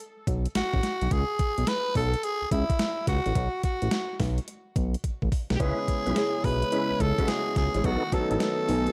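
A raspy, gritty tenor saxophone carries the melody up front over a fat, detuned analog bass and a crisp, overdriven 8-bit drum machine with gated reverb and a thumpy kick, in this confident, bouncy new jack swing excerpt, where a drum fill at 5.0 seconds leads to the entry of a polished grand piano, a brassy background pad with chorus and tonewheel organ stabs through a fast rotary speaker at 5.6 seconds.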